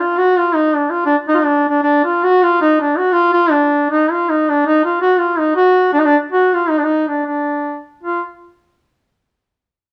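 A solo duduk opens this fiery, virtuosic fragment of Balkan folk music, cut from a longer piece. It moves at a brisk 321 BPM counted in eighths, in a straight 11/8 metre, with the tuning set slightly low at A4 = 439 Hz. The duduk's tone is clear, with a soft attack and scooped notes in a folk style. It stays within a narrow span from D4 to Gb4. It sits up front in the mix, yet carries a distant, roomy character from a moderate studio reverb with a 0.8-second decay, as if played live in a single room. The opening passage runs to 8.0 seconds, the duduk stops at 8.2 seconds, and a new section begins at 8.0 seconds and continues until the fragment ends at 9.9 seconds.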